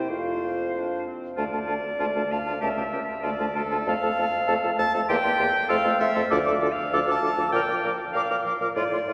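From the very first second, an airy, tongued silver flute with vibrato sings the melody over a warm oboe second line, an up-front bright clarinet, a distant French horn and a mellow bassoon bass in this cheerful, lively classical-period wind quintet excerpt in D minor at 98 BPM in 2/4, played with rubato and steeped in a wet church reverb that rings for 3.7 seconds.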